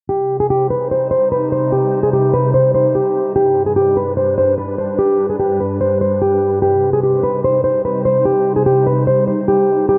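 Hip hop at 147 BPM in 4/4 with a half-time feel, this excerpt from a longer piece sits in C harmonic minor and carries a dark, hard-hitting mood. A fingerpicked, plugged-in steel-string acoustic guitar carries the melody from 0.1 seconds, its full-bodied jumbo tone placed up front and softened by a low-pass filter. Just behind it, from 0.2 seconds, a glassy FM pad holds sustained chords with a slow attack and long release, its ethereal, mellow sound thickened by ensemble chorus and its own reverb. The harmony moves from Cm to G at 3.4 seconds and back to Cm at 6.6 seconds. A huge ambient reverb with a long tail and a low-pass filter give the whole mix a dark, warm production.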